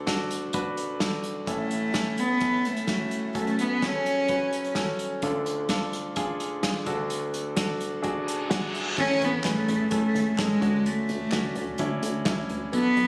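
Piano-driven pop at 128 BPM in a straight 4/4, hopeful and warm in mood, cut from a longer piece. A clear concert grand piano carries the accompaniment throughout, up front and polished with deep bass, long sustain and audible action noise, adding fills around 4.5 and 8.0 seconds, while an acoustic drum kit played with bundle sticks supplies a tight kick, medium-tuned snare, hi-hat, toms and crash in a small room. A single cello takes the melody from 1.5 seconds, played sul tasto with a soft attack, light vibrato and an airy bow, sitting close and intimate over chords moving from D through A, F#m and Dm. An electronic reverse cymbal leads into the second section at 9.0 seconds, where the harmony shifts to Amaj7 and Dmaj7, the cello returns, and a punchy, funky analog bass with a filtered pluck, fast attack and decaying tone joins alongside very quiet, crisp group handclaps. The sound has the character of a phone recording in the room, with moderate stage reverb, small room ambience, club reverb and compression.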